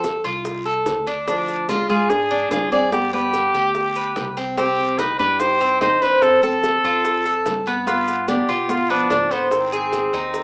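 A rough home-demo mix with a small-speaker sound and a wet small-room reverb frames this sultry, nostalgic Cuban son and guajira fragment at 146 BPM in 4/4, where an up-front, punchy trumpet with vintage vibrato carries the melody over a fingerpicked nylon-string guitar second line, metallic, double-strung Cuban tres arpeggios, a woody, thumpy pizzicato upright bass on gut strings, tight high-tuned bongos, distant low-tuned congas, a raspy guiro and grainy maracas, moving through chords from F to Ab.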